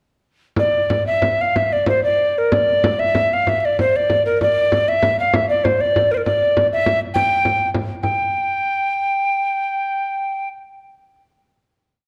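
A breathy, mellow alto recorder leads this short medieval dance, its woody tone with soft attacks, gentle vibrato and rolled-off highs sitting up front as it plays an ornamented modal melody. A frame drum enters with it at 0.6 seconds, close and dry, keeping an evenly spread pattern in a straight six-eight. The mood is ancient and mysterious, and the pace gradually speeds up through the dance. The drum stops at 8.2 seconds while the recorder holds a final note until 10.5 seconds. A moderate scoring-stage reverb and a dark, warm production give the piece a shadowy sense of space.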